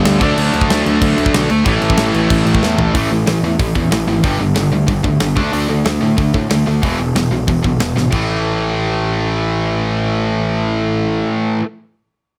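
Punk rock at a charging 185 BPM in straight 4/4, this short, rebellious and rowdy cut from a longer piece is built on a stack of distorted riffing guitars. A crunchy, overdriven, double-tracked guitar sits in the background for only the opening 2.9 seconds, while two tight, bright distorted guitars run the riff together, one up front and one further back. A growly, fuzz-laden picked bass, both direct and amped, sits up front beneath them, and a tight acoustic drum kit with bright cymbals, a medium-tuned snare and a tight kick drives things from the front until about 8.2 seconds. The harmony moves from D to A, then shifts into power chords on A5, G5, D5 and E5 before landing back on A5 at 8.1 seconds. Drum fills mark the changes between sections, and the whole is set in a studio room with light reverb.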